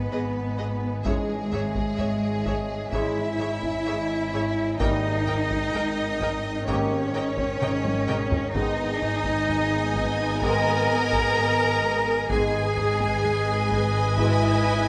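Mysterious and eerie, this suspense film cue moves at a slow 64 BPM in G# harmonic minor. An up-front, smooth cello section carries the bass over a focused double bass pedal on G#1, while a lush violin section plays the melody and a second violin line sits in the background; distant viola accompaniment and a very quiet, ringing, fingerpicked harp riff fill in beneath. Ethereal glass harmonica chords hover alongside mellow French horns and a very quiet, vintage trombone section, both brass parts entering around 1 second, as the harmony moves from G#m through C#m/G# to D#/G# and back, while heavy-stick taiko drums in a small room add weight with a fill at 7.6 seconds, within a moderate scoring-stage reverb.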